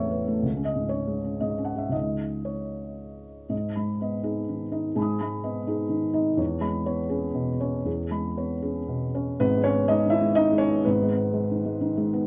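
In a rubato 3/4 that drifts between 112 and 129 BPM, this short excerpt of neoclassical minimalist piano unfolds with a wistful, reflective air. A felt-muted upright piano plays alone throughout the 12.3 seconds, its thick felt giving every note a soft, mellow, intimate tone that sits up front in the sound. The instrument spans a range from G#1 up to D#6, and it is tuned slightly high at A4 = 444 Hz. The harmony moves from C#sus2 to G#m at 3.5 seconds, passes through E6, and returns to G#m at 9.4 seconds. Close, detailed microphones capture the piano with only a light touch of reverb, keeping the performance personal and hushed.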